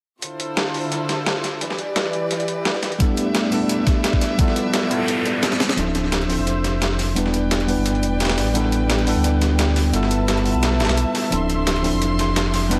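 Rolling and melancholic, this liquid drum and bass passage opens on a dark, sul tasto chamber string section pumping under sidechain, with a gritty, overdriven dusty soul sampler-style kit of hi-hat and snare carrying tape echo up front. At 3.0 seconds a worn, slightly out-of-tune tine electric piano joins through low-pass filtering and analog delay, alongside a second breakbeat sampler-style kit with a high-tuned snare and a knocking electronic kick that plays only briefly, before a background noise sweep and riser leads into the build-up. From 5.8 seconds a deep, full sine sub bass with octave anchors the Dm9 to G13 cycle while a filter sweeps across the electric piano, all within an echo-heavy mix marked by light reverb and lossy compression artefacts.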